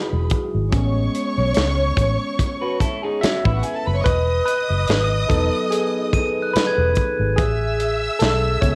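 Lush 1970s-style soul in E major at a relaxed 72 BPM, with a gently swung sixteenth feel and a romantic mood, built on Emaj7 and Amaj7 chords in this brief excerpt cut from a longer piece. A barky, bright tine electric piano through a combo amp and a phaser takes the solo throughout, over a dark, round, foam-muted fingered bass and a punchy, up-front studio drum kit of kick, snare and hi-hat, while a warm, bowed symphonic string section with expressive vibrato carries a second line up high. A twangy, slightly broken-up electric guitar riff appears from 2.6 to 4.0 seconds, and a sparkling glockenspiel struck with hard plastic mallets rings in the background near the end, all colored by light reverb and the hazy character of a home cassette recording.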